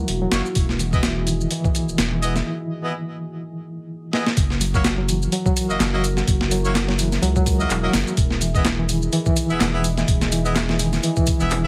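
Opening together, a moody, detuned pad pumping in the background, a reedy, slightly out-of-tune electric piano riff with fast tremolo, sampler grit and delay, and a thick, saturated sub bass launch this energetic, funky breakbeat excerpt, joined almost at once by a gritty, thumpy sampler-style breakbeat kit up front, a layered garage kit of handclaps, hi-hat and shaker, and brilliant horn stabs with light vibrato and delay, the whole mix squeezed into a heavily compressed radio sound with light reverb as a break at 2.5 seconds and a drum fill lead into the drop at 4.4 seconds.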